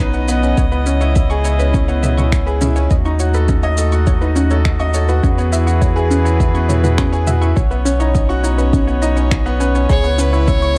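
A straight 4/4 pulse at 103 BPM drives this moving, cinematic piano and strings electronica cut from a longer piece in C# minor, with a deep, tape-warm electronic kick arriving at 0.6 seconds beneath a deep house kit of finger snaps, shaker and toms that carries the sound of a small room. A round sine sub bass sits up front with a fast attack and sustained notes, pumping to the kick alongside a dark, nasal string quartet whose bowed sustained chords have a gut-string, period-style tone with light vibrato. A bright, woody upright piano plays a vintage riff through delay, while a warbling, lo-fi pluck of detuned triangle and sawtooth with a noise layer murmurs arpeggios in the background through chorus, delay and sidechain pumping. The harmony moves through Badd9, C#m7, D#dim and Eadd9 before returning to Badd9 and C#m7. At 9.9 seconds a clear, biting solo violin enters with an intense, vibrato-rich melody, adding a final lift to the dark production under light reverb.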